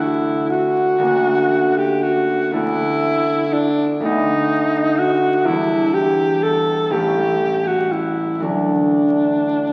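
Heard through the crackle of a very old 78 rpm record, this brief fragment of a longer piece sits in a wet concert hall reverb that lets each note linger. It is a tender, romantic classical duo for alto saxophone and harp in D major, moving in a slow, rubato 6/8 at around 38-42 BPM counted in dotted quarters. The bright alto saxophone carries the melody up front, playing solo in a classical style with vibrato in a range from D4 to A4. The concert harp supports it from A1 up to D4, its fingerpicked strings ringing with a warm, acoustic tone, also close in the balance. The harmony moves from D5 through F#/D, Bm7/D, Em7 and A before settling back on D at 8.4 seconds, just before the fragment ends at 9.7 seconds.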